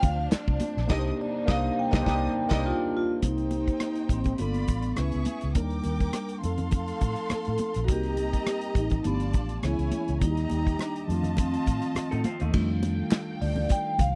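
Lush 1970s-style soul in C dorian at 103 BPM with a gentle 16th-note swing, smooth and cinematic, cut from a longer piece: a mellow, airy vibraphone with soft mallets carries the melody over a worn, slightly out-of-tune tine electric piano bathed in lush chorus, while an expressive studio violin section sings a second line until 12.5 seconds. A round, foam-muted electric bass and an up-front acoustic drum kit with dark cymbals and a tight kick anchor the groove, with bright, high-tuned congas and hollow group handclaps sitting in the background, and the band hits an accent from 0.9 to 3.2 seconds as a symphonic string section holds smooth sustained chords. Near the end a slightly broken-up, lo-fi electric guitar riff flickers in at 12.1 seconds, all captured in a dry, close 1970s-style studio sound.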